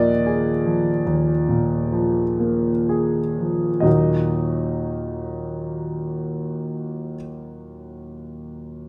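An intimate concert grand piano opens this brief passage from a longer romantic nocturne, its deep bass and natural tone heard up front with audible action noise in a wet recital hall. The wistful, mournful solo unfolds in a free, rubato 4/4, slowing through the first 3.9 seconds before a new section begins and carries the music to its close at 8.9 seconds.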